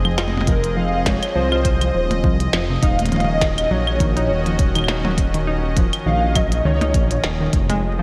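A swung sixteenth-note groove in 4/4 drives this eerie, glitchy IDM fragment, with a deep electronic kick and a glitchy kit of tiny snare, clicky hi-hats, claves and percussion blips sitting in studio reverb. A rumbling, detuned, saturated saw bass sits up front beneath a smooth, slow-blooming analog pad and a lo-fi, wave-folded pluck arpeggio tucked in the background, both carrying 12-bit sampler grit and chorus as the harmony moves from Fm7 to Ebm7 at 2.8 s. From 0.5 s, a nostalgic, mellow lead with vibrato floats above, its warbling tone trailed by slapback echo and digital delay, all within a lush hall reverb that gives a big arena feel.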